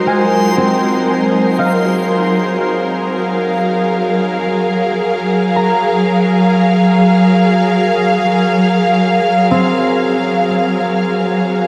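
Awash in a drenched shimmer reverb with a 7.4-second tail, this ambient excerpt floats in free time, tuned to A4 = 439 Hz. Up front, a close, intimate studio string section holds sustained bowed chords sul tasto, its soft attack, vibrato and smooth top lending a tender glow to an Ab9 harmony. A concert harp plays mellow, thumb-plucked arpeggios that ring through a tape echo, while an organ-like drone sits in the background on Gb3, warbling and vintage in tone through ensemble chorus and its own reverb. For the first 1.6 seconds, a reversed, granular texture swells brilliant and dreamy in the background before it stops, and the strings, harp and drone carry on until 11.7 seconds. The mood is weightless and peaceful throughout.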